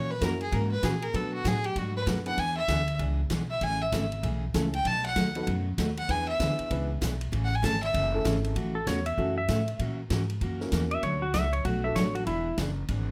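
A cheerful swung 4/4 groove drives this western swing country excerpt, with a swinging big-band drum kit on kick, snare, hi-hat and ride, a thumpy gut-string upright bass up front, bright picked dreadnought acoustic guitar, and a worn, slightly detuned upright piano adding boxy accompaniment. A biting, earthy fiddle with light vibrato and an airy bow takes the opening solo until about 8.6 seconds. At 8.8 seconds a twangy, clean lap steel slide guitar steps forward for the next solo, all set in a moderate club reverb.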